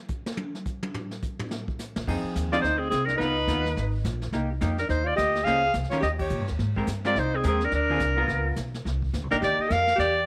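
A bright, forceful clarinet with vibrato carries the melody up front in this cool, swinging excerpt of small-group jazz in C minor at 212 BPM, joined at 2.5 seconds by a breathy, whispered alto saxophone second line, after a brushed drum solo opens the passage and a woody, thumpy upright bass and dark, clean hollow-body electric guitar enter near 2.0 seconds, with a band accent at 6.2 seconds and moderate plate reverb on the mix.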